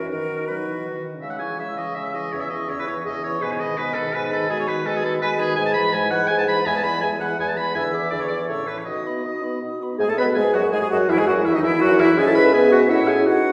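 A bright, airy silver concert flute carries the melody in this lively, cheerful classical-period movement for wind quintet, playing expressively with vibrato, a soft attack and lifted highs. The music moves quickly at 165 BPM in 3/4 with a straight feel, starting in C# minor and turning to E major at 5.6 s, with the tuning set at A4 = 443 Hz. Beneath the flute, a clear, up-front oboe plays a second line, while a dark clarinet and a warm French horn supply the accompaniment in classical style. A mellow bassoon with light vibrato holds the bass and sounds distant and roomy. All five instruments play together from start to finish of this short passage, which is cut from a longer piece and heard through the wet reverb of a recital hall in a church or concert hall.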